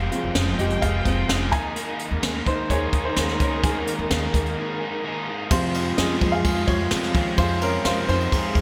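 A straight 4/4 pulse at 128 BPM, played by an up-front brushed drum kit with dark cymbals, a high-tuned snare, a boomy kick and gated reverb, drives this bittersweet, dramatic piano-driven pop excerpt in F minor, where a natural, short-sustained baby grand with subtle chorus takes solo passages over Fm and Ebsus4, supported by a woody pizzicato upright bass, a picked, overdriven semi-hollow guitar riff with analog chorus and a smooth, vibrato-rich string section in the background, before a break at 4.6 seconds leads to a mellow, distant French horn section adding a second line from 5.5 seconds, set in a lush hall with bright 1980s-style digital production.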